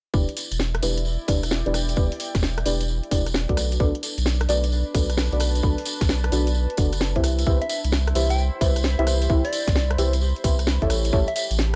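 UK garage in a skippy two-step groove at 131 BPM in E minor, this soulful excerpt pairs a thick, saturated sub bass pumping under a tight electronic kick with a garage kit of cracking snare, bright hats and rim click, jingly vintage tambourine, deep mellow chord stabs dressed in chorus, phaser and analog delay over Em7, Bm7, Cmaj7 and A7, and a nostalgic, warbling tape-like pad in the background, before a round, keys-like FM lead enters at 7.6 seconds, all captured in a dry, gritty hardware sound.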